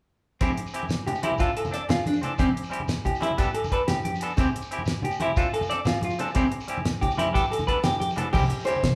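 Highlife guitar band music in a sunny, danceable mood, moving at 121 BPM in a straight 12/8 in C major. Two clean, picked electric guitars carry the track from 0.4 seconds: one plays bright, twangy accompaniment up front, while the other spins out arpeggios a little higher in its range. A damped 70s drum kit sits forward with a dry, fat snare, a tight kick, hi-hat and crash, surrounded by ringing, low-tuned congas played with soft hands, compressed and saturated agogo bells in the background, and a grainy, mellow shekere that sounds distant. The chords cycle through C, F6 and Gadd9, and at 8.3 seconds a boxy, old ladder-braced acoustic guitar picks a brief melody with audible finger squeak, joined by a woody, thumpy pizzicato upright bass on gut strings. The band plays live in one room with a moderate large studio reverb, and the piece is cut from a longer performance.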